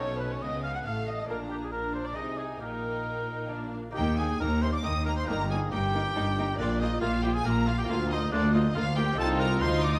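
A mellow solo oboe with a soft attack and light vibrato carries the melody in this lively, brilliant baroque-style concerto movement in triple time, sharing it with a close, expressive violin section in a higher register while a darker, woody violin line sits in the background. A focused viola section and a bright, delicate fingerpicked lute with gut strings fill out the accompaniment, and a lush cello section and intense double basses anchor the bass. A moderate stage reverb gives this short cut from a longer piece a sense of space.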